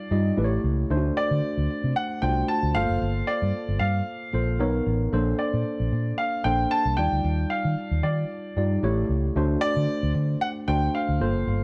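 Polished 1980s jazz-funk pop, this upbeat, breezy clip moves at 114 BPM in 4/4 with a light 54% swing on the sixteenths, tuned slightly low to A4 = 439 Hz. A natural-sounding concert grand, full in its low end, carries the melody up front in a high register between D5 and A5. Beneath it, a worn, slightly out-of-tune tine electric piano supplies clean, direct accompaniment, bathed in a lush chorus. From 0.1 s a dark, foam-muted fingered electric bass sits prominently in the mix, its amped tone round and punchy. The harmony passes from A7 and D7 through Gm11 and a run of major-ninth chords, Bmaj9, Bbmaj9 and Ebmaj9, before returning to A7 and D7, all set in light reverb with a touch of studio ambience in this short segment cut from a longer piece.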